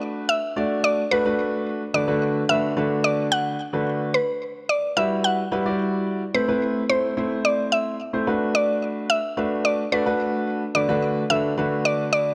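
Pop at 109 BPM in 4/4 with a straight, energetic and confident feel, cut from a longer piece and running 12.3 seconds. A woody, round mallet-like synth pluck with a fast attack, chorus and digital delay carries the melody up front. A clear, polished grand piano supplies accompaniment through chords such as D6, Bm7/D, Emadd9 and Am. A dark production and a moderate plate reverb with a 2.4-second decay frame both parts.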